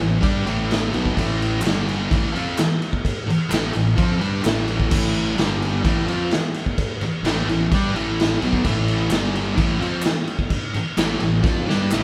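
A straight 4/4 pulse at 128 BPM drives this menacing, swaggering garage rock piece in A minor, with a thick, double-tracked fuzz guitar riff and a round, overdriven fingered bass moving through A5, G5 and Am. The raw drum kit sits up front with a punchy kick, medium-tuned snare and crash cymbal, its gritty, saturated sound rolled off at the top, and it ends on a fill at 11.4 seconds. Crisp group handclaps sit in the background from 1.6 seconds and again from 9.1 seconds, with the band playing live in one room under light reverb.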